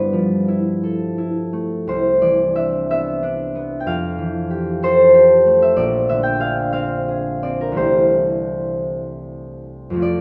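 Dreamy and peaceful, this classical piece for solo concert harp moves in a rubato 6/8 at around 51-64 BPM in C major, cut from a longer work. The up-front harp sounds acoustic, thumb-plucked and ringing, spanning Bb1 to G5 through a chord path from G13 and Cmaj9 to Fmaj9, Bb9 and finally C6 at 7.8 seconds. A wet recital hall reverb gives the notes a lingering glow.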